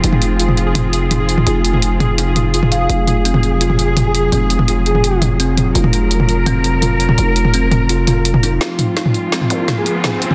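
An overdriven drum and bass kit sits up front, its woody snare and bright hi-hats ringing through a small room while toms fill out the pattern in a dark, tense half-time groove at 168 BPM in F phrygian. Beneath it, a growling, buzzy 808-style bass with a fast attack and decaying notes holds the low end, while a veiled, con sordino chamber cello section sustains chords over Fm7 and Gb/F, its grainy 12-bit sampler texture matching the kalimba. The kalimba plays airy, ringing arpeggios with a thumbnail pluck, softened by a low-pass filter and trailed by tape echo. A pulsing, tempo-synced gated pad with detuned chorus shimmers quietly until 8.6 s, and a breathy, flute-like synth lead with tremolo and vibrato appears briefly in the background from 4.1 s and again near the end. At 8.6 s the harmony moves to F5 for a build-up with a drum fill, joined by an electronic riser from 9.1 s, all inside a dense, heavily limited master with light reverb.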